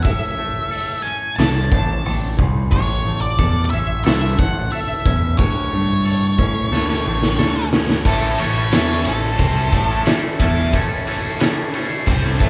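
Bittersweet and restless, this quiet-loud alternative rock excerpt opens in half time, with a dark, fuzzed octave lead guitar singing its melody over clean, twangy fingered arpeggios, a growling, overdriven picked bass and an oversized, low-tuned drum kit with a boomy kick, fat snare and dark cymbals, gritty and pumping up front in a bright stone room, until a drum fill carries the band at 8.1 seconds into a solo section where a cranked, bright stack guitar crashes in with an overdriven riff, the fuzz lead falling away at 10.0 seconds, all of it captured live together in a large studio space.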